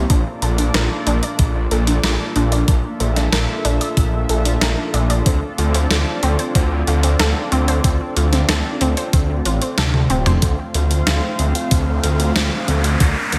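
A thick, detuned saw bass sits up front in this moody, nostalgic synthwave cut from a longer piece, its saturated, chorused unison tone holding the low end at 93 BPM in D minor, tuned to A4 = 436 Hz. Behind it, a shimmering, retro pulse-width pad sustains slow-swelling chords that move from Bbmaj7 to Dm7, pumping against the sidechain. A warbling, lo-fi pluck sits in the background with mellow, dusty arpeggios, dressed in chorus, delay and slapback echo. The drums pair a thumpy, overdriven electronic kick with a sampler-style 12-bit kit of hi-hat, toms and a medium-tuned snare placed up front, both re-recorded in a large room, and a drum fill at 9.8 seconds leads into a new section at 10.4 seconds. An electronic riser enters at 11.6 seconds, and a lush hall reverb gives the mix a big arena scale.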